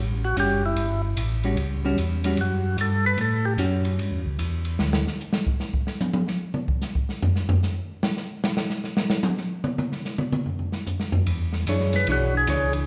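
A mellow, round tonewheel organ bass with chorus vibrato and slow rotary speaker opens this soulful, greasy soul jazz organ trio at 149 BPM in swung 4/4 over an A13 chord, joined almost at once by a percussive organ melody with key click and second harmonic percussion, a dark, picked hollow-body jazz guitar, and an airy, polished drum kit with a boomy kick and dark cymbals. From 5.1 seconds the drums play alone through a solo, until the bass returns at 11.3 seconds over an E13 chord and the organ melody and guitar rejoin briefly. The trio sits in a wet recital hall reverb, and the recording is cut from a longer piece.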